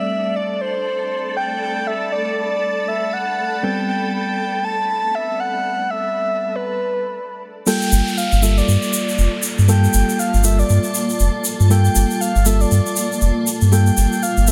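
This deep house excerpt opens on a breathy, flute-like synth lead carrying the melody over mellow FM electric piano stabs and a cloudy, evolving granular pad, all moving at 119 BPM in 4/4 with a swung sixteenth-note feel in G dorian. The mood is hypnotic, and the first chord is Am9. A soft, silky string machine hangs on a high note behind them from 0.3 seconds, its ensemble chorus adding a vintage sheen. The lead sits up front with chorus, tremolo, vibrato and digital delay, while the round, warbling electric piano carries chorus, tremolo and tape echo. After a short break, the drop arrives at 7.7 seconds on Gm9, bringing in a grainy, distant egg shaker and an electronic downlifter, and a deep, full sub bass with octave enters up front just after. The whole is set in light digital ambience and finished with a dense, heavily limited modern master.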